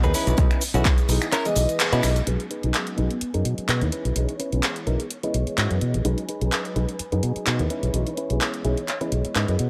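Feel-good, joyful filtered disco house at 127 BPM with a swung groove, where a growly, up-front fingered electric bass, twangy clean electric guitar riff and dark mellow grand piano with phaser all pump under a low-pass filter alongside a layered house kit of cabasa, snaps, handclaps and hi-hat whose hats and percussion also pump. A quiet tambourine and punchy electronic kick appear only in the opening seconds, with a band accent at 1.8 seconds, and a swirling, vintage string machine enters at 2.3 seconds in the background of a dry, gritty mix.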